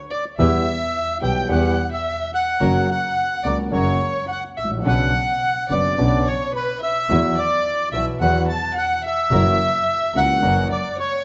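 A reedy, dark bandoneon opens this tense, dramatic tango fragment at 0.1 s, carrying the melody up front, while a single bowed violin plays a second line alongside it in the same register, its tone sweetened by vibrato, portamento and a smooth top. At 0.4 s the rest of the ensemble enters: a concert grand piano, up front with deep bass, an open tone and long sustain, supplies the accompaniment, and a bowed double bass, soft in attack, pure and floating yet distant, anchors the low end. A muted chamber string section, con sordino and veiled, adds very quiet, close stabs beneath the leads. The pulse sits around 108 BPM in 4/4 but is played rubato, moving through Em, F#, Bmadd9 and Esus2 before arriving on F#7. Recital hall reverb with a long tail wraps the whole group in a hall-like space with a soft, rounded high end, and the passage is cut from a longer piece, ending at 11.2 s.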